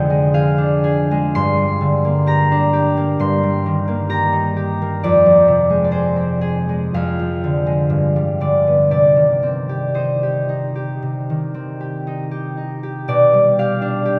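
A classical piece for solo concert harp in C minor, this short excerpt cut from a longer work has a gentle, wistful mood. It moves at a slow, flexible 56-67 BPM in 4/4, played rubato. The harp sits up front with a bright, ringing, fingerpicked tone, spanning F2 to C6. A wet cathedral reverb places it in a vast, echoing space, with a long tail that lingers after each note. The harmony passes through Gm, Eb/G and Fm, settles through G7 onto Cm at 8.9 seconds, and at 13.1 seconds a brief new section opens on G/B before the clip ends at 14.2 seconds.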